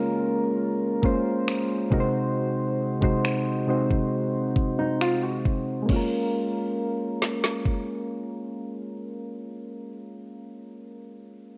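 Soft, round electric-piano-like synth keys open this late-night, sensual contemporary R&B fragment, their dark, chorused tone filtered and softened by cassette tape as they move from Bbm7 to Ab7/C. At 1.0 seconds a produced electronic drum kit arrives up front, with a knocking kick, a woody snare, finger snaps and a crash cymbal, playing until 7.9 seconds. Midway through, a fingerpicked nylon-string guitar with old strings adds a brief, full-bodied arpeggio in a deep classical tone, also filtered. The keys return to Bbm7 as the section changes and carry on alone at the close. The recording has a homemade, cassette-bound intimacy, with light reverb and a muffled top end, and it is cut from a longer piece.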